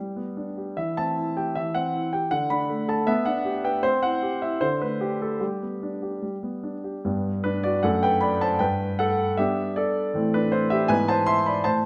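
A solo grand piano opens this graceful, elegant classical-period sonatina, its warm, natural tone set up front in a moderate recital hall reverb. Played in 2/4 with gentle rubato, it moves through poised, simple harmonies before shifting into a new section at 7.0 seconds that leans toward A minor and an E chord over G#. The passage is cut from a longer piece and ends at 11.9 seconds.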